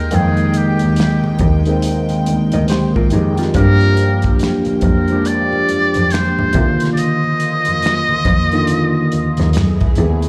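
R&B and neo-soul at a relaxed, smooth 70 BPM with a swung sixteenth feel, where a buzzy, metal-muted trumpet carries the melody up front with slapback echo over a barky, overdriven tine electric piano colored by a phaser, soft sul tasto string chords in the background, a veiled, bowed muted cello on bass, a gritty, saturated soul drum kit with finger snaps, hi-hat, kick and snare, very quiet low-tuned congas, and a dark hollow-body jazz guitar line heard only between 2.5 and 3.8 seconds, the mix sounding like a live club gig through the venue's PA with small-room reverb.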